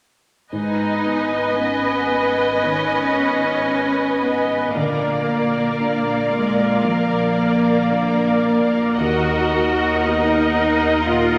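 Cinematic and bittersweet at a slow, rubato 57 BPM, this brief, moving passage sets a warm, vibrato-laden violin melody in the background over a rich, focused second violin line, a distant viola section, lush cellos, a clear, intense double bass section, a soft felt-muted upright piano with audible action noise, and a bright, ringing harp's thumb-plucked arpeggios, all played from 0.5 seconds as the chords move from Abm to Bb to Ebm in the wet reverb of a scoring stage.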